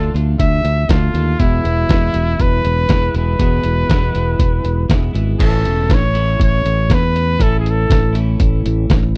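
Jangly and carefree, this short indie rock cut from a longer piece sets a clear, vintage-toned trumpet melody with vibrato and slapback echo over a bright, twangy twelve-string electric guitar riff with subtle chorus, an up-front fingered electric bass, a very quiet, slightly broken-up guitar through a small old amp, and a muffled, pitched-down sampler-style drum kit with a thumpy kick, all captured in a dry, close 1970s-style studio sound, with a break at 5.1 seconds before the music settles on A at 5.4 seconds.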